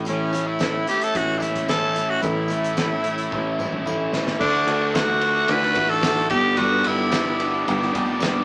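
Folk rock and heartland rock with a nostalgic glow, this short clip of a band playing live in one room puts a raspy, gritty tenor saxophone melody with scooped notes and vibrato up front over a full-bodied jumbo acoustic guitar, a bright, overdriven, double-tracked garage guitar riff, a growly fingered electric bass, a loose indie drum kit with a fat snare, punchy kick, dark cymbals and a fill from 3.3 to 4.4 seconds, and a very quiet, jingly tambourine, all moving through A, D and G chords inside a wet studio ambience with a small-speaker sound.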